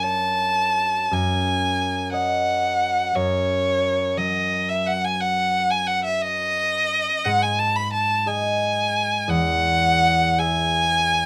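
Light reverb lends this brief passage, cut from a longer piece, a soft sense of space. It is an impressionist classical duo for violin and harp, wistful and mysterious, moving slowly in a rubato 12/8 at roughly 49-61 BPM counted in dotted quarters. A single bowed violin carries the melody up front for the full 11.3 seconds, its rich, focused tone shaded with vibrato and a smooth top as it stays between C#5 and B5. Beneath it, the concert harp supplies accompaniment at a lower level, its thumb-plucked acoustic strings ringing warm across a span from E2 to G#5. The harmony drifts from F#madd9 to C#sus24/F#, settles on G#5 at 7.2 seconds, and arrives at Eadd9 at 9.3 seconds.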